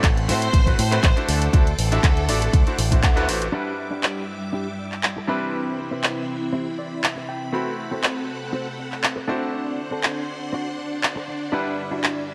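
A punchy electronic kick drives this sensual, cosmic nu-disco excerpt at 120 BPM in 4/4, with a light 16th-note swing in A dorian. In the opening seconds the kick and an up-front picked electric bass, bright through its envelope filter, join a rich, expressive violin section that sings a short bowed melody with vibrato and tape echo, leading to a band accent at 3.0 seconds. A house drum kit with handclaps and bright hi-hats runs throughout. A brilliant baby grand piano plays polished, short-sustained accompaniment through digital delay and sidechain pumping. A vintage string machine holds lush sawtooth chords with a sub octave, soft attack and ensemble chorus, and it also pumps with the sidechain. From 3.5 seconds a clean, direct-recorded electric guitar picks a compressed riff, softened by lush chorus, a low-pass filter and digital delay, and it adds a fill at 6.5 seconds over a progression that moves from Am69 through Em7, Cmaj7 and D7, all in a light reverb.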